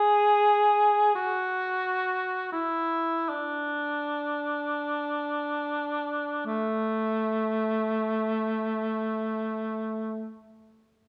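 A mellow cor anglais carries this short classical fragment entirely on its own, sounding up front with gentle vibrato and a smooth top to its tone. The mood is lyrical and serene, and the playing is expressive and free, stretching time in a relaxed rubato lilt of six beats to the bar. Across its first 6.5 seconds the line gradually slows, before a contrasting second phrase follows. The solo voice stays within a modest range from A3 to G#4, and it falls silent at 10.3 seconds, letting the final moments ring into the room. A moderate recital hall reverb and a touch of small room ambience give the lone reed a soft, intimate glow.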